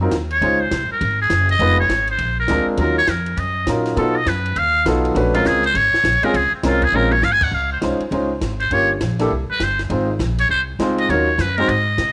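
Moody and cool, this short cut from a longer small-group swing and bop piece moves at a brisk 202 BPM in 4/4 with a swing feel, starting in Bb minor and shifting to Db major at 7.5 seconds. A trumpet with a metal mute carries the solo melody up front, its buzzy, raspy tone marked by vibrato, scooped notes and a growling, vintage edge. Beneath it, a concert grand piano comps through rich chords such as Dbmaj9, B7#11 and Bbm9, its intimate sound showing audible action noise, deep bass and long sustain. An upright bass plays pizzicato with a woody, up-front presence, while a compact cocktail drum kit keeps time on dry, dark cymbals, a high-tuned snare and a tight kick, adding a fill at 6.9 seconds. The trumpet, piano and drums carry the character of cassette tape, and the whole home recording sits in a light reverb.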